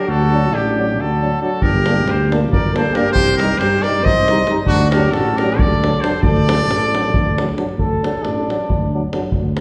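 A bright, up-front trumpet carries the melody of this virtuosic, bittersweet Balkan brass band fragment in 7/8, while a soft-edged flugelhorn with light vibrato traces a second line and takes a brief solo at 7.8 s. A dark, punchy tuba holds the bass, a distant euphonium and trombone fill in accompaniment in the background, and a deep davul joins at 1.6 s. The band plays in a recital hall with a long, wet reverb as the chords move from D through Gm and Cm back to D.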